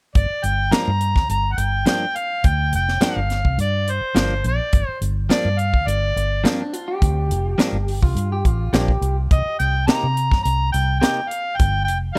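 A mellow, overdriven harmonica carries the melody with scooped notes in this brooding, smoky straight-eighth soul blues excerpt in G minor at 105 BPM, moving from Gm7 to Cm7 at 9.3 seconds. Beneath it sit a dry, airy funk kit with a high-tuned snare and tight kick, a dark, round, foam-muted electric bass, and picked stabs from a clean, compressed, direct-recorded electric guitar. Between 6.5 and 9.2 seconds, a second, slightly broken-up guitar through a small old amp adds a warm picked line bathed in spring reverb and tape echo.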